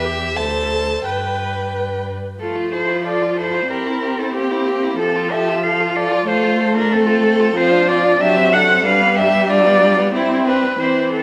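A moderate scoring-stage reverb surrounds this short cut from a longer classical-period movement for string quartet, graceful and lively at 93 BPM in 2/4 with a straight feel. Two focused, rich violins with vibrato carry the melody and a second line, while an up-front viola, close and expressive with soft attacks and portamento, fills the accompaniment and a smooth, even cello anchors the bass. The harmony moves from F major to C major at 7.6 s, settling on a C/G chord at 10.1 s.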